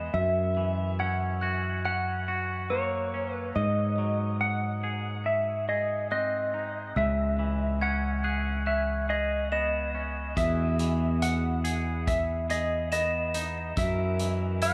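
This post-rock excerpt is hopeful and euphoric, moving at a slow 70 BPM in a straight 4/4 over a progression from F#7 to G#7, C#m7, Emaj7 and back to F#7. A dark, clean lap steel guitar carries the slide melody up front, its analog delay trailing each phrase. A twangy electric guitar plays fingered arpeggios through its own delay, and a glockenspiel struck with soft plastic mallets adds ringing, bell-like arpeggios high above. A bright, growly fingered electric bass sits up front from the start. At 10.4 seconds a very quiet, compressed pedal steel guitar enters with sustained chords, and a loose indie drum kit with a tight kick, hi-hat and a rolled-off top joins and plays through to the cut at 14.7 seconds, all within a light, small-room ambience.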